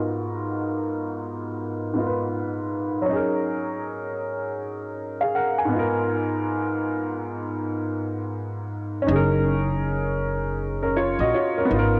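Nostalgic and hazy, this short section cut from a longer lo-fi hip hop piece moves at 80 BPM in 4/4 with a swung sixteenth-note feel. A worn, slightly detuned upright piano sits up front with long sustain, playing G#m69 and F#69 chords through cassette-tape grit, a low-pass filter and a filter sweep until 9.1 s. Then a woody, thumpy pizzicato upright bass on gut strings enters low and up front, all in a lightly reverberant home recording on cassette.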